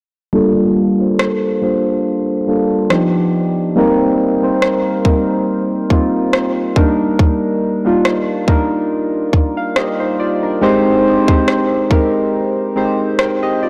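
Contemporary R&B with a longing, late-night mood, this excerpt opens with soft electric-piano-like synth keys at 0.3 seconds: round, detuned and wave-folded, carrying a chorus effect and a filter sweep through rich jazz chords such as Gm9, Cm7 and Abmaj7. A glitchy electronic drum kit of tight kick and rim click joins at 1.2 seconds, overdriven and up front, with a lightly swung sixteenth-note feel. A lush hall reverb surrounds the blown-out, overdriven mix, and a break arrives at 12.3 seconds before the cut.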